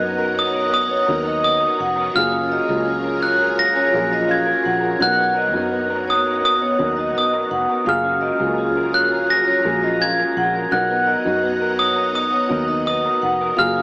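In a straight 4/4 feel, this hazy, nostalgic indie pop fragment pairs a bell-like glockenspiel melody, up front with analog chorus and delay, with a vibraphone second line entering at 0.4 s, and sets them over a slightly broken-up, warbly electric guitar, a woody upright piano with audible action noise and cassette-tape character, lush phased string-machine chords and a round, foam-muted electric bass, all moving between Bmaj7 and F#maj9 in a small room with an AM radio sound.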